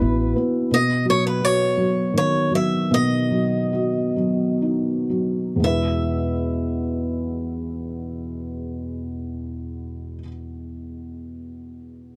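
Hopeful and intimate, this brief folk fragment in a straight 3/4 feel opens on an Esus2 chord before moving to Badd9. A picked acoustic guitar with bright, fresh strings and a slightly boxy tone carries the melody up front in a high register, with a swing-style touch. Beneath it, a felt-muted upright piano plays the accompaniment, its thick felt giving a soft, mellow, vintage sound, with audible action noise adding closeness. The music slows from 0.7 to 5.6 s, then settles onto a plain E chord as a second passage begins. The guitar drops out at 10.2 s, leaving the piano alone for its last moments, all framed by light reverb and a dark, warm production.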